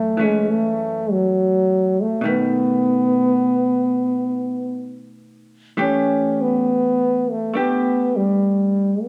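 A mellow trombone and a dark, clean electric hollow-body guitar begin together on an F#m7 chord in this tender, romantic jazz ballad fragment, moving at a slow 68 BPM in 4/4 with a gentle swing on the eighth notes and tuned to A4 = 445 Hz. The trombone sits up front with light vibrato and scooped notes as it carries the melody, while the picked, compressed guitar comps quietly beneath it through B7 at 2.2 seconds and Em7 at 5.8 seconds. The band plays live in one room, and a wet stone-room reverb lends the sound an intimate glow.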